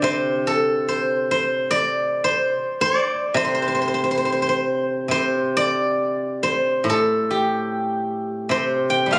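A steel-string zither, played with fingerpicks, carries this brief cut from a longer piece alone, its ringing, silvery tone sitting up front from 0.0 to 9.2 seconds. The music is Chinese traditional solo plucked-string playing, pastoral and serene in mood. It moves at about 71 BPM in 2/4, though the beats fall unevenly with a free, rubato feel. The zither spans a range from A2 up to G5, and the passage falls into two parts, with a change at 5.1 seconds. Captured on a phone in the room and given light studio reverb, the acoustic sound keeps an intimate, close presence.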